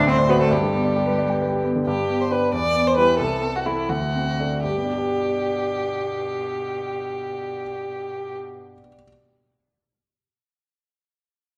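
A quick, lively classical-period movement for piano trio in G major and 6/8, this short passage cut from a longer piece moves at roughly 78-93 dotted-quarter beats per minute with a graceful, straight feel, though it slows down between 1.2 and 4.6 seconds. A rich, smooth violin carries the melody up front, bowed by a single player with vibrato and an even tone that still sounds somewhat distant. The concert grand piano supplies the accompaniment from deep bass up into its upper register, intimate and polished, with long sustain and audible action noise. In the background, a single clear cello bows a second line with vibrato, smooth and even. The harmony moves from D7 to G, then through Em, Am/C and D7 before settling back on G at 4.6 seconds, all set in a wet recital hall reverb.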